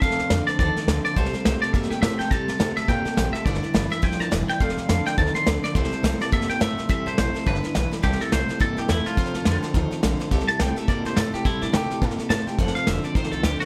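A swung 4/4 groove at 210 BPM drives this retro, rollicking rockabilly in C mixolydian, with a dark, brushed vintage kit up front and a woody, thumpy pizzicato upright bass underneath. A bright, twangy electric guitar carries the melody with tape echo, a slightly broken-up electric guitar with tremolo plays a low riff, and a full-bodied steel-string acoustic is picked along with audible finger squeak over C6, F6 and G6 chords. The dry mix opens into a clean electric guitar solo at 8.0 seconds, running through to the end of the 13.7-second cut.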